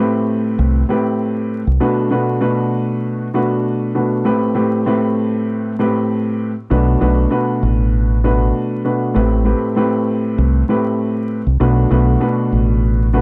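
A dark, mellow concert grand piano opens this moody boom-bap hip-hop excerpt, sitting up front with intimate key-action noise and a vintage, cassette-filtered tone as it alternates between Am7 and Bm7 over a lightly swung groove. A deep, round fingered electric bass with transformer saturation appears from 0.6 to 1.8 seconds, then returns at 6.7 seconds to anchor the low end with a direct, amped tone. The small, dry room carries a gritty hardware character and a bed of vinyl crackle.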